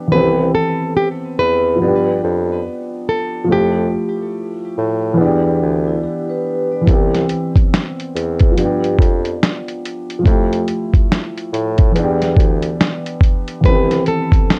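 Nostalgic and mellow, this lo-fi hip hop excerpt in a swung 4/4 rests on a dark, woody upright piano with audible action noise and cassette-tape grit, while a close-miked bassoon with light vibrato carries the bass beneath a fingerpicked nylon-string guitar melody marked by finger squeak and tape echo. A ringing vibraphone played with soft mallets adds a brief, airy second line at 5.9 seconds, and at 6.9 seconds a compressed, pitched-down, muffled sampler-style drum kit arrives up front with a thumpy kick, hi-hat and medium-tuned snare. The guitar falls silent after 4.7 seconds and returns near the close, as the chords cycle through Cmaj7, G7, Fmaj9 and Em7 under light reverb.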